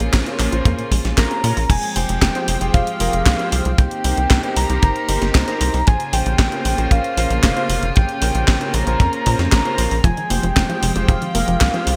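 This nostalgic, danceable italo disco excerpt runs at 115 BPM in Bb dorian. It opens with earthy chamber strings holding sustained chords in the background, a detuned unison pluck playing delayed arpeggios, clangy electric grand piano stabs thickened by ensemble chorus, and a nasal, punchy sawtooth sequencer bass driving up front. The house drum kit adds a cracking snare, handclaps, hi-hat and crash cymbal treated with gated reverb, while a dry, tight acoustic kick sits prominently in the mix. At 1.2 seconds a round, full synth lead layered with a sub octave takes the melody, carrying chorus, vibrato and digital delay. The pluck drops out after 1.6 seconds and returns at 10.0 seconds as the harmony cycles through Bbmadd9, Fmadd9 and Cm7. The production is bright and 1980s-styled, set in a light small-room reverb.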